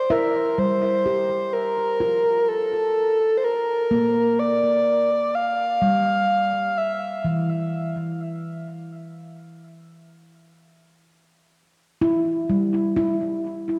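Peaceful and meditative, this ambient piece drifts at 63 BPM in Bb lydian, with a breathy, flute-like synth lead carrying a sustained, vibrato-tinged melody through chorus and tape echo until 7.3 seconds. A mellow, ringing handpan plays arpeggios up front throughout, continuing alone after the lead stops as the harmony moves from Bb5 to Em. A wet echo-chamber reverb and cassette-tape character give the echo-heavy mix a hazy, intimate feel.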